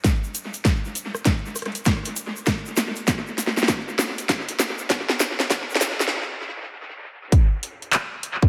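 An echo-heavy mix with moderate echo chamber reverb, digital ambience and a high-pass filter frames this short glitch hop excerpt, cut from a longer piece. The mood is gritty and playful, moving at 99 BPM in 4/4 with a swung sixteenth-note feel. Up front, a punchy, tape-warm electronic kick drum sits alongside a layered, produced dubstep drum kit of handclaps, metallic hats, rim click and a huge snare, the kit soaked in dub echo. In the background, a grainy, bright acoustic tube shaker sounds close and dry until it stops at 6.1 s. The opening builds with a drum fill and a filter sweep, breaks into a stop at 6.1 s, and then the drop hits at 7.3 s to carry the excerpt to its end.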